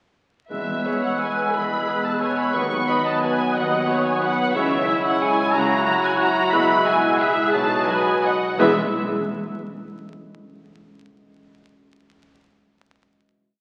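A festive, elegant orchestral ballroom waltz with a lilting rubato feel, heard through the crackle of a very old 78 rpm record in a wet concert hall, opens at 0.5 s with a timpani stroke beneath a clear, lush violin section carrying the melody up front, while a hollow flute section, a close-miked oboe, a roomy clarinet, a soft-attacked bassoon and a tight French horn section hold sustained chords in the background. From 0.8 s a second violin section adds very quiet after-beat chords and a viola section weaves a smooth counter-melody, while a symphonic cello section and a focused double bass section carry the bass on the beats, and a bright concert harp spins broken chords that keep ringing through the final chord until 9.7 s.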